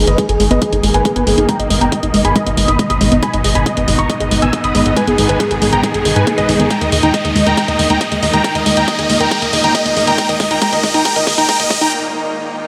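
Huge, detuned supersaw chords carry the melody from the start of this driving, emotional uplifting trance build-up at 138 BPM in G# harmonic minor. A worn baby grand piano plays a second line in the background, veiled con sordino strings sustain dark chords, and a tight, saturated sequencer bass pumps beneath, all moving from G#madd9 to D#sus4 at 6.7 seconds. A filter sweep runs across the supersaws and the punchy sawtooth pluck arpeggios, a riser climbs in the background, punchy layered kicks and bright hats push into a drum fill, and the muted strings hold alone through a brief break from 11.9 to 12.7 seconds, all in a light digital ambience.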